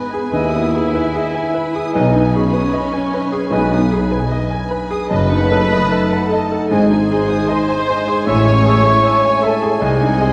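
Pushing and pulling in a rubato 4/4, this passionate, tragic classical passage, cut from a longer piece, places a clear, polished baby grand piano up front carrying the melody, with a studio violin section also on the melody in the background with vibrato and portamento. A lush, smooth-topped symphonic violin section, an airy silver flute, a distant dark clarinet and a very quiet mellow cor anglais add second lines, while a woody viola section accompanies and a roomy trumpet section adds mellow stabs. From 0.3 seconds a very quiet horn section holds sustained chords over a bass of even double basses, a hushed cello section and a faint tuba, all set in a moderate concert hall reverb with vinyl crackle as the harmony moves from G#m through D#dim/F# and Amaj7 to G#/B#.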